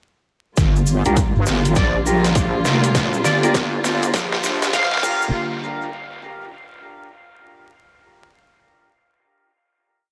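A heavy, saturated wobble bass sits up front in this short, gritty and playful glitch hop piece, its detuned square-and-sine unison carrying modulated phrases with changing wobble speed beneath a swung 4/4 groove. The bass, drums, shaker and strings arrive at 0.6 seconds as a build over a single G minor seventh chord: a punchy, broken electronic kick and a dubstep kit with a deep snare, closed hats and crash, re-recorded in a large room and edited into a swung beat, run through a drum fill and filter sweep. A grainy tube shaker adds hand-played sixteenths, and a lush, bowed studio string section holds a focused sustained pad that pumps against the sidechain. From 1.1 seconds a dark, clean electric guitar drops in sparse, echoing chord stabs in close voicing, and from 1.8 seconds an edgy, tearing sync lead with ring modulation, vibrato and a sub octave offers short answering phrases. At 5.3 seconds the build gives way to a final hit, all set in an echo-heavy mix with light reverb and a dusting of vinyl crackle.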